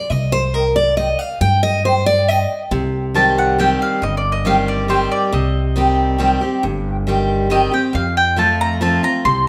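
A bright, full-bodied dreadnought guitar opens this haunting, lonesome bluegrass piece in 3/4 at 138 BPM, picked up front and taking a solo through the first 2.7 seconds. A dark, thumpy upright bass with gut strings joins almost at once, plucked low beneath it, and a warm, up-front mandolin soon adds picked stabs trailed by tape echo. At 3.2 seconds a second, mellow mandolin enters in the background with the melody, its doubled strings sounding woody. The music sits in C dorian, resting on C minor before moving to F near the close, with tuning slightly under standard pitch. A wet, large studio reverb gives the ensemble a spacious, lingering air in this brief cut from a longer piece.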